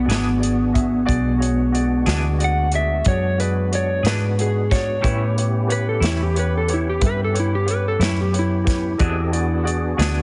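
Slow blues in 12/8 with a laid-back, gritty mood, cut from a longer piece, moving from E7 to A7 at 5.0 s and back to E7 at 9.0 s. An electric slide guitar leads with a solo melody, its dark, slightly broken-up tone fingered and compressed, until it stops at 9.6 s. Beneath it, a vintage fingered electric bass sits up front with a round, foam-muted, amped sound, while a natural country drum kit plays hi-hat, a punchy kick and a medium-tuned snare in an airy, polished studio room. Further back, a clear upright piano adds woody, short-sustained accompaniment, and a tonewheel organ holds fat, lightly overdriven chords with key click, chorus vibrato and a slow rotary speaker. A clean electric guitar contributes bright, twangy, picked accompaniment with tremolo, and the mix carries light reverb under a heavily compressed, radio-like sound with the top end trimmed away.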